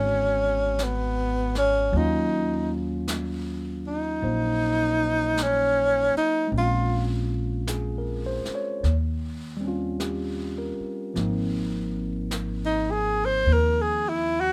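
A close-miked tenor saxophone solos with vibrato and scooped notes over a barky, lightly overdriven tine electric piano and a woody pizzicato upright bass, with a soft brushed kit entering at 0.8 seconds in a small room, giving this melancholic, smoky swung jazz ballad excerpt its late-night feel under light reverb.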